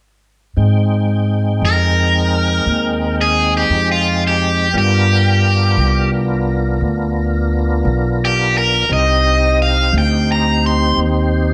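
Light reverb and a faint mains hum color this mournful, soulful slow blues fragment in 12/8, where a woody pizzicato upright bass and a full, lightly overdriven tonewheel organ holding sustained chords through a slow rotary speaker with chorus vibrato set the foundation from 0.6 seconds, and a bright, picked, overdriven electric guitar carries the melody up front from 1.7 seconds over chords moving from Abmaj7 to G7#9 to Cm.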